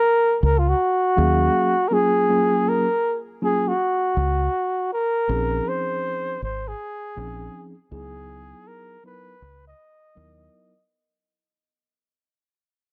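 Cool and smoky, this hip hop excerpt in Eb minor sits at a relaxed 80 BPM with a swung 16th-note feel, fading out across its whole length. A breathy, whispered flugelhorn leads from the start with jazz-style vibrato and scooped notes, joined at 0.4 seconds by a round, punchy, foam-muted dub bass and at 1.2 seconds by a mellow tine electric piano heard through its built-in speakers. The harmony moves from a rootless Ebm11 to Bbm11 and Dbm11, and the dry, close 1970s-style studio sound keeps the horn intimate and up front.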